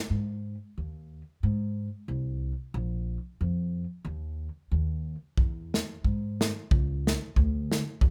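A woody, pizzicato upright bass with steel strings sits up front through this bouncy, jolly alpine folk dance clip in Ab major, moving at 91 BPM in 2/4 with a loose, lightly swung and rubato feel. At 5.4 seconds an airy, polished country drum kit joins with a punchy kick and a medium-tuned snare, playing on until the cut at 8.1 seconds. The sound is dry and close, with little reverb.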